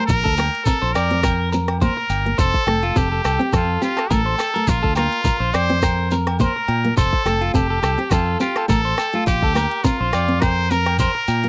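A lightly swung 105 BPM groove in 4/4 from a glitchy, tight-kicked drum kit with clicky hats and rim clicks, joined by grainy shekere and ringing agogo bells in the background, drives this carefree, danceable highlife guitar band excerpt, where a nasal straight-muted trumpet carries the melody up front over a round, punchy fingered bass, fingerpicked nylon-string guitar and twangy, slightly broken-up electric guitar arpeggios with slapback echo, all cycling between Bbadd9 and F in a dry, close 1970s-style studio sound.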